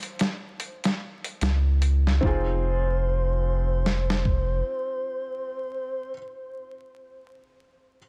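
Brooding and melancholic, this trip hop fragment in F minor moves at 74 BPM with a swung feel, opening on a compressed, thumpy sampler-style drum kit, joined at 1.4 seconds by a round, deep analog bass, and then at 2.2 seconds, as an Fm7 chord arrives, by a breathy, gliding sine lead with subtle chorus and tape echo floating over a soft, felt-muted upright piano carrying harmonic tremolo, vintage 12-bit sampler grit and audible action noise, all within a dense, heavily limited master dusted with vinyl crackle.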